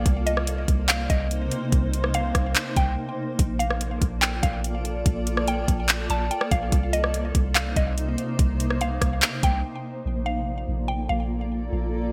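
A blurred, detuned granular pad with its own reverb and sidechain pumping, a round, sine-like 808 bass sitting deep and up front, and a woody, mellow FM pluck that carries the melody high above through chorus and delay all open this melancholic, spacious cloud-rap excerpt in C dorian together. Smooth, electronic R&B drums with a soft kick, metallic hats, handclaps and rim clicks arrive at 0.1 seconds in a half-time feel at 144 BPM, their gated reverb standing up front, and after a brief break at 3.0 seconds they play on before stopping at 9.5 seconds. The harmony drifts between Cm7 and Bbmaj7 under bright, 1980s-style digital production with a light ambience, the pad and bass continuing until the end at 12.1 seconds.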